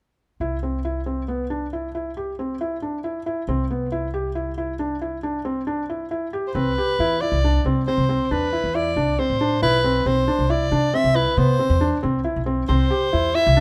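A felt-muted upright piano and a pizzicato upright bass open the recording together at 0.4 seconds, the piano rolling soft arpeggios in a mellow, intimate register while the bass sits beneath with a woody, growly tone from its steel strings. This is contemporary instrumental music in an uneven 7/4 metre with a straight feel, and its mood is restless and playful. The piano's felt gives it a hushed, muted character, and the audible action noise of its mechanism adds a natural, close presence. At 6.5 seconds the harmony moves from C to Cmaj7 and a soprano saxophone enters with the melody, its jazz-style solo voice warm and close-miked. Piano, bass and saxophone all sit up front, captured by close, detailed microphones with a light touch of reverb, and the passage is cut from a longer piece, ending at 13.6 seconds.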